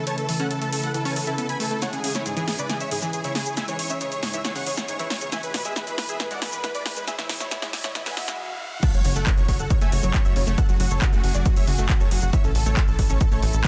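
A dense, heavily limited master with light reverb carries this driving, soaring slice of uplifting trance at 137 BPM in F# minor, where a huge, detuned supersaw melody, a bright, chorused analog pluck playing arpeggios and lush bowed strings in the background all pump to the sidechain over A, C#m and E chords. A punchy, overdriven analog drum machine of snare, handclaps, hi-hat, shaker and crash builds through a fill toward a brief stop, while a very quiet electronic riser, swell and impact arrive at 4.9 seconds. At 8.8 seconds the drop lands on F#m with a layered, up-front electronic kick and a tight, mellow sawtooth sequencer bass, the supersaw's digital delay trailing above.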